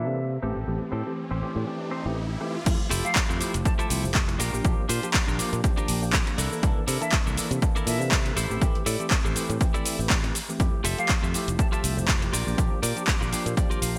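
Filtered disco house at 121 BPM in F major with a feel-good, funky swing: a barky tine electric piano through a phaser, a clean picked guitar riff and a punchy fingered bass with tube saturation all pump under a low-pass filter, while a breathy, unsteady flute with digital delay drifts in the background and an electronic riser builds until the overdriven kick and analog drum machine with handclaps, shaker, hi-hat and gated-reverb crash drop in at 2.7 seconds, moving through Fmaj9, Bb6, C13 and Am7 before a guitar fill at 13.1 seconds closes this bright 1980s-style digital excerpt.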